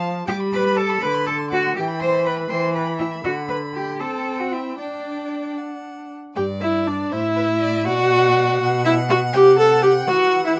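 This quick classical-period movement for string quartet is lively and spirited, moving at 80 BPM in dotted quarters in 6/8 with a flexible, rubato feel in G major. The first violin carries the melody in a focused, vibrato-laden tone, with the second violin's second line sounding clear yet distant alongside it. The bowed viola sits close and up front, its smooth, even accompaniment the most prominent voice in the blend. The cello joins at 0.3 seconds with an intense, rich bass line that climbs as high as C5. The harmony moves from G through D7 and Em before a new section arrives at 6.4 seconds, turning toward Bm and closing on C. Light reverb and a dark production surround this fragment, cut from a longer piece.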